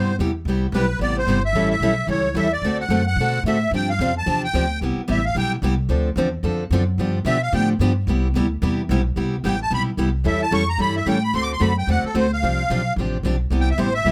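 A reedy musette accordion, close-miked and dry, carries the melody with a full, shimmering tone, soloing from 0.5 seconds through to the end of this lively, playful jazz manouche passage cut from a longer piece. Beneath it, a picked steel-string acoustic guitar supplies the accompaniment with a concert-guitar character, its finger squeaks audible up front. An upright bass, played pizzicato on steel strings, gives a woody, thumpy foundation that sits just as far forward. The swung acoustic string feel moves through the same progression twice, turning from Cmaj7 through A7, D7 and G7sus4 back home, with a second pass beginning at 9.2 seconds. Light reverb lends the trio a small sense of space around the instruments.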